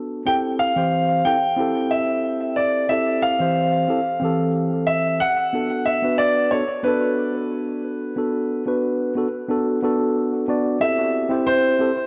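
Smooth and relaxed, this short chillout passage at 91 BPM in a straight 4/4 pairs a mellow, clean tine electric piano playing accompaniment from 0.0 seconds with an open, deep-bassed concert grand piano carrying the melody from 0.3 seconds, both up front and treated with analog delay, while a wet spring reverb bathes the echo-heavy mix as the harmony moves from Fmaj9 to Bm7 and settles on C6 at 10.8 seconds.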